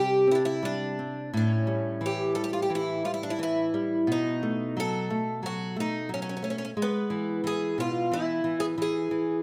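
A fado-style ballad at 89 BPM in 4/4 with a rubato, passionate and longing feel, this fragment of a longer piece sets a picked twelve-string acoustic guitar carrying the melody with a shimmering, octave-doubled, woody and boxy tone from old strings over a small, fingerpicked nylon-string guitar accompaniment with audible finger squeak, both up front in a moderate scoring-stage reverb as the chords move through Csus2, A7, B7 and E across 9.4 seconds.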